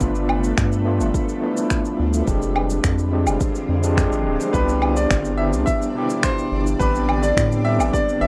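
A deep, layered electronic kick and a tape-toned kit of electronic cabasa, woodblock and finger snaps, re-recorded in a small room, set a straight 4/4 pulse at 106 BPM for this sunny sunset chillout excerpt in C major, tuned to A4 = 443 Hz. Up front, a round analog bass with a nasal, dark character holds the low end, while a barky, gritty overdriven tine electric piano, played through a combo amp with fast tremolo and delay, carries the accompaniment. Beneath them, an ethereal pad of detuned unison voices with an octave-up shimmer sustains the chords G9, Fm6, Cmaj9 and Am11, coloured by chorus, phaser and its own reverb. At 4.5 s a grand piano enters with a brilliant, open melody between B4 and E5, its notes short in sustain. The recording sits in a moderate studio ambience with the rough balance of a home demo.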